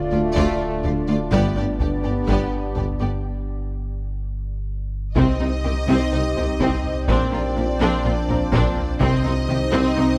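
Vast and tense, this cinematic excerpt of hybrid orchestral and electronic film score moves at 125 BPM in C dorian, where an evolving, chorused wavetable pad, a background French horn section, a deep sine sub bass with octave and a very quiet squelchy, resonant blip pluck playing arpeggios through a filter sweep and phaser sit beneath a smooth, close studio violin section carrying the melody with vibrato, a focused symphonic violin section on a second line, a distant viola section, a lush, very quiet cello and double bass section, a mellow solo tuba and a taiko ensemble struck with heavy sticks, with a break from 3.2 to 5.2 seconds before the harmony shifts from Dm and G to Cm and Bbadd9 under light reverb and detailed close miking.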